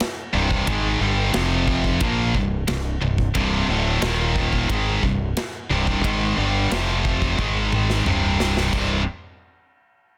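A big acoustic rock kit with a punchy kick and bright cymbals opens this relentless, epic heavy metal fragment, joined at 0.3 seconds by an up-front, high-gain picked guitar riff, a scooped second distorted guitar and a growling, overdriven fingered bass churning through dark minor and power-chord changes in a dense, heavily limited studio mix, before a drum fill at 7.4 seconds.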